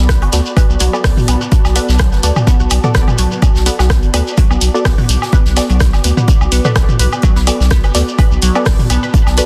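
A dense, heavily limited mix opens this quirky, sparse minimal techno excerpt in B minor at 126 BPM with a light 16th-note swing, resting on a single Bm7 chord: a punchy electronic kick sits up front beside a deep, saturated sub bass, while an ethereal chorused pad, a squelchy resonant blip pluck with phaser and delay, and a muted filtered dub chord stab with chorus and delay float above, the bass, pad and pluck all pumping to the sidechain, and a textured percussion bed of analog drum-machine hi-hat and rim click, a soft, high-passed acoustic kit in the background, a grainy shekere and tape-toned electronic woodblock and toms fills out the groove.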